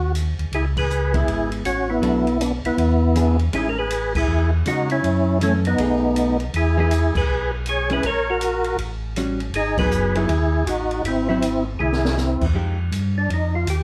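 Soul jazz organ trio in C# minor at 160 BPM with a swung feel, smoky and soulful, where a percussive, lightly overdriven tonewheel organ with third harmonic percussion and stopped rotary speaker carries the melody over a round, mellow organ bass turning on a slow rotary speaker, an open acoustic drum kit with dark cymbals, high-tuned snare and boomy kick, and a clean, compressed hollow-body archtop guitar comping from 1.1 seconds, all set back in a wet club reverb, with band accents and a drum fill at 11.8 seconds leading into a brief organ solo at 12.5 seconds.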